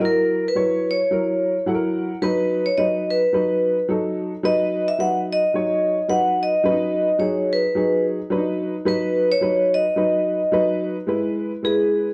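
A dark, warm production sits in a moderately large studio room whose reverb gives both instruments a gentle halo. This short fragment of a longer soul piece carries a joyful mood over a relaxed swing feel in four. A dark upright piano accompanies throughout, mellow, woody and slightly detuned, with a worn, boxy character, audible action noise and an intimate, up-front presence. At 1.4 seconds the piano slips in a brief fill. The vibraphone, struck with hard mallets, carries the melody with a metallic, ringing tone softened by a slow motor vibrato and a smooth, shadowed edge, and at 11.1 seconds it moves into a short solo as the harmony shifts.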